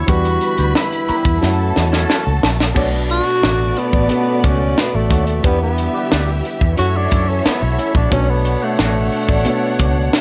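Cinematic and smooth, this lush 1970s-style soul passage, cut from a longer piece, sets a close-miked tenor saxophone with light vibrato and scooped notes over a round, punchy, foam-muted electric bass and a tight funk drum kit with a high-tuned snare, crash cymbal, hi-hat and kick. A concert grand piano with audible action noise carries the accompaniment, a bowed violin section with a focused, smooth top plays a second line through tape echo, and a veiled con sordino string section holds very quiet, distant chords while a dark, clean electric guitar plays a wah-tinged riff in the background. After a drum fill from 1.4 to 2.8 seconds, the saxophone takes a jazz-style solo that runs to the end at 10.2 seconds, all within a light reverb.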